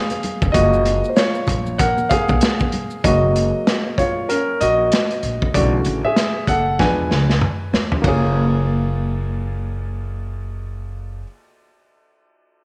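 A dark, mellow, vintage grand piano leads this cool, smooth jazz-hop excerpt in F# major at a swung 96 BPM, soloing over extended chords for its first 8 seconds. A gritty, saturated breakbeat kit with a tight kick and rolled-off top sits up front beside a woody, thumpy pizzicato upright bass on gut strings, while bright congas and maracas stay in the background until 3.0 seconds and the drums play a fill from 6.8 seconds. An echo-chamber reverb blended with a small room lends the recording depth.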